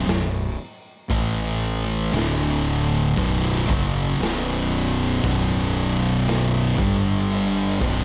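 A straight 4/4 pulse at a slow 58 BPM drives this sludgy, hypnotic stoner and doom metal excerpt in B minor, where an up-front, dark fuzz guitar riff and a second distorted fuzz guitar in the background move through B5, A5, D5 and G5 power chords, a growly, overdriven fingered bass rumbles beneath, and a raw garage kit of punchy kick, medium-tuned snare and hi-hat enters at 0.1 s, sounding gritty, saturated and rolled-off in a small, pumping room.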